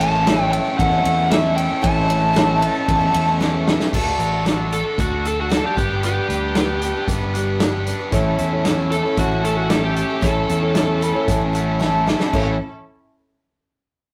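Folk rock with a heartland rock drive, this jangly, nostalgic clip sets a shimmering, octave-doubled twelve-string acoustic and a double-tracked overdriven guitar riff over punchy fingered bass and an up-front country drum kit, while a biting lead guitar takes a solo from 3.9 s, a reedy, slightly out-of-tune electric piano with fast tremolo returns at 8.1 s and adds a fill from 10.8 s, and a very quiet string section holds smooth chords beneath, all in a rough rehearsal-room sound with tube saturation.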